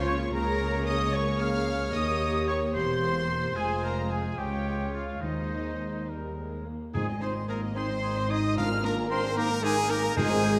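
In a rubato 6/8 at 74 BPM, this spirited, cheerful classical-period orchestral movement in Ab major has a dusky, woody violin section carrying the melody while a floating second violin section, an airy flute and a clear, vintage-toned oboe add supporting lines, intimate violas, cellos and double basses fill the accompaniment and bass, a distant horn section holds sustained chords, a bright trumpet punches out stabs, very quiet timpani join at 5.2 seconds, and a mellow clarinet adds a line from 6.9 seconds, all set in the wet reverb of a scoring stage.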